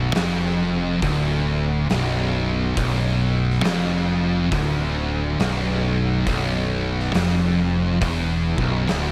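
Stoner and doom metal, sludgy and heavy at a slow 69 BPM with a swung feel, this short cut from a longer piece sits on B minor as a bright, double-tracked distorted electric guitar and two dark, fuzzy, picked guitars in the background grind out the low riff together from the start, a growly, direct fingered electric bass with tube saturation sits an octave below, and an oversized low-tuned acoustic drum kit enters at 0.1 seconds with a fat snare, punchy kick and hi-hat in a bright stone room, all under light reverb.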